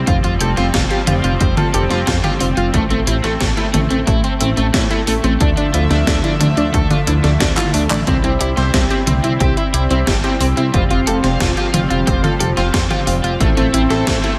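Synthwave at 90 BPM in 4/4 with a straight feel, dreamy and nostalgic, cut from a longer piece and set in a lush hall reverb that gives it a big arena sound. A shimmering, chorused pulse-width pad holds sustained chords in the background with sidechain pumping, while a bright, detuned unison pluck spins arpeggios through delay and slapback echo. Up front, a dark, glossy chorused synth bass anchors the progression from Fsus2 through Am and Dmadd9 to C. An overdriven, compressed electric guitar plays a picked riff coloured by analog chorus, delay and slapback echo. A punchy, tape-warm electronic kick and a sampler-style 80s drum machine with gated reverb on the snare, plus handclaps, hi-hat and toms, drive the groove, with a drum fill from 7.6 seconds leading into the entry of a full-bodied, mellow chorused polysynth at 8.1 seconds, which adds stabs with delay and slapback echo through the end.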